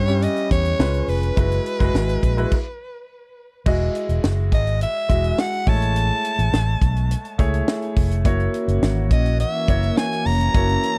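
Polished 1980s jazz-funk pop with an urban, upbeat mood, this short excerpt moves at 105 BPM in a straight 4/4. A raspy, gritty soprano saxophone carries the melody with vibrato, close-miked and edgy in a pop style, while a clear, present grand piano with subtle chorus supplies the accompaniment. Underneath, a fingered electric bass run through an envelope filter sits bright, punchy and up front, joined by a tight funk drum kit with a high-tuned snare, tight kick, hi-hat and crash cymbal in a small, natural-sounding room. The harmony opens on Em6, C#7 and F#9sus4 before a stop from 2.5 to 3.7 seconds, then a new section settles onto Emaj9, Amaj7 and F#7. At 8.7 seconds a smooth, warbling analog pad with a slow attack and chorus slips in beneath the band with sustained chords. The whole thing has a dry, close 1970s-style studio sound with little reverb.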